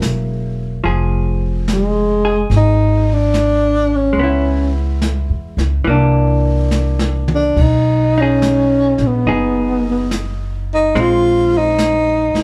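Intimate and late-night, this slow swung jazz ballad at 71 BPM opens with clean, compressed hollow-body electric guitar comping, woody pizzicato upright bass and a brushed kit with dark cymbals and a boomy kick, before a breathy, whispered tenor saxophone enters at 1.7 s with subtone, vibrato and scooped notes up front, over chords moving from Gb9 through Fm, Dbm7, C9 and B69 to Bb7sus2, with a drum fill at 6.7 s, all set in a wet studio ambience heard from further back in the room.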